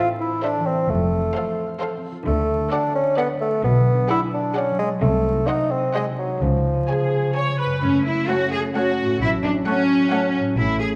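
A 3/4 pulse at 130 BPM, played straight, carries this short cut from a cinematic film cue in F# minor, playful and whimsical with a magical, sneaky edge. From the opening, a concert harp rings out arpeggios while violins carry a vibrato-laden melody and a focused second line, both set back in the mix, over smooth, even violas and an up-front bassoon with a light vibrato. At 0.9 seconds, cellos and double basses join on the bass line, the cellos prominent yet distant, the basses lush with a smooth top. The harmony wanders through chromatic turns, including a half-diminished chord over B and a C diminished seventh, before settling on F# minor at 7.8 seconds, where a mellow, tight French horn section enters with sustained chords. Just after, at 8.3 seconds, a clear, very quiet clarinet, a close-miked oboe and an airy flute ensemble add brief second lines. A moderate scoring-stage reverb and a layer of vinyl crackle give the sound a dusty, storybook character.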